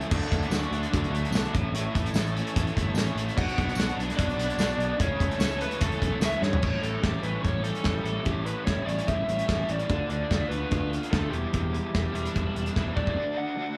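A straight 4/4 indie rock groove at 147 BPM in A mixolydian drives this jangly, wistful fragment, where a loose, gritty drum kit with a punchy kick and growly overdriven fingered bass push under a dark crunchy guitar riff with harmonic tremolo and a bright raw garage guitar soaked in chorus and delay, while a silky, very quiet analog string pad and a distant jingly tambourine shimmer behind. A dark lead guitar through a small cranked amp takes the melody from 3.4 seconds alongside a clear, roomy trumpet line, and as the harmony moves from D, A and Bm through A7, Dm6 and Em7, drum fills at 6.4 and 12.8 seconds lead into the A7 and the return to D in a dry, small room.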